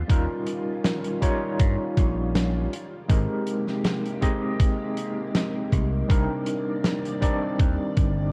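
A slow 80 BPM groove in 4/4 with a light swing on the sixteenths sets this hazy, woozy vaporwave fragment in motion, a thumpy sampler-style electronic kick sitting up front beside the fat snare and hi-hat of a big, smooth rock kit, while a punchy, amped slap bass with tube saturation anchors the low end. An overdriven, gritty tine electric piano, pushed through a combo amp with medium tremolo, lush chorus, tape echo and 12-bit sampler grit, carries the accompaniment over chords moving from Eb9 to Abmaj9 at 2.7 seconds and Cm9 at 6.1 seconds. Beneath it a silky string machine holds slow-attack chords through phaser and ensemble chorus, all wrapped in a dark, cassette-tinged studio reverb.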